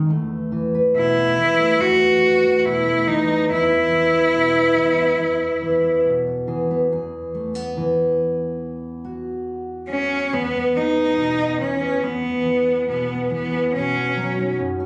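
Tender and nostalgic, this short folk fragment moves at a slow 70 BPM in E major, with a dark, full-bodied fingerpicked steel-string acoustic guitar on fresh strings opening at 0.0 seconds and a single bowed cello entering at 1.0 seconds. The cello carries the melody with a rich, smooth, even tone and vibrato. Both instruments sit up front over suspended and added-ninth harmonies that settle onto a plain E chord at 10.3 seconds, in a phone recording made in the room with light club reverb and a dulled top end.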